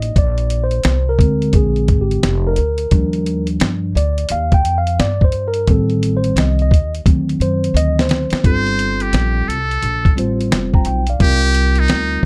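Jazz-hop at 87 BPM in G minor with a smoky, mellow swing, where gritty, compressed sampler-style drums with a thumpy kick and fat snare sit up front alongside a woody pizzicato upright bass and a clean, mellow tine electric piano that carries a solo over lush extended chords until a drum fill at 7.1 seconds hands off to a buzzy, thin, metal-muted trumpet with light vibrato and plate reverb soloing from 8.5 seconds, all in a dark, lightly reverberant mix cut from a longer piece.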